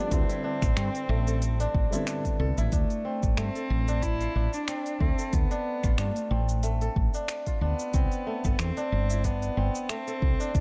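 This organic downtempo piece, cut from a longer work, sits at 92 BPM in 4/4 with a 56% swing on the sixteenths, and its D dorian mood is hypnotic and warm. A deep electronic kick and a produced electronic kit of crisp hi-hat, cabasa and finger snaps, re-recorded in a small room for a tape-softened feel, carry the groove. A dark, round and punchy fretless electric bass sits up front, with tube saturation and sidechain pumping. A ringing, fingerpicked kora spins arpeggios with tape echo, while a single bowed cello carries a smooth, nasal, slightly boxy melody with light vibrato, also touched by tape echo. A muted, mellow upright piano with a vintage, intimate tone supports the opening Cmaj7 until 2.7 seconds, when the harmony moves to Dm7 before returning to Cmaj7 at 7.9 seconds.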